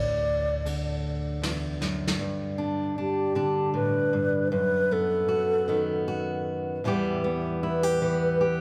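A lingering church reverb surrounds this short pastoral, nostalgic acoustic folk excerpt in a slow 3/4 at 78 BPM, cut from a longer piece. An airy alto flute with vibrato and rolled-off highs carries the melody over a dark, up-front fingerpicked steel-string guitar that moves from D through Gadd9 and B7/F# to Em. A woody, thumpy pizzicato upright bass sounds only until 2.2 s, and a distant brush kit on ride and snare joins at 0.7 s before closing with a drum fill at 1.8 s.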